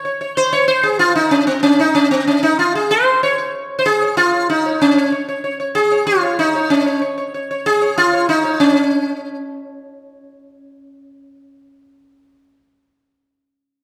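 Indian classical music in a devotional, serene mood, this short passage is cut from a longer piece and features a single sitar playing solo from 0.0 to 12.6 seconds. The plectrum-plucked acoustic sitar sits up front, its tone bright and round with a buzzing edge and a shimmering halo from its sympathetic strings. Set in raga hamsadhwani in a straight 4/4, the line moves within a compact range from C4 to Db5. An opening section gives way to a contrasting passage at 8.6 seconds, which runs until 11.1 seconds. A wet recital-hall reverb surrounds the instrument, lending the plucked notes a lingering, spacious tail.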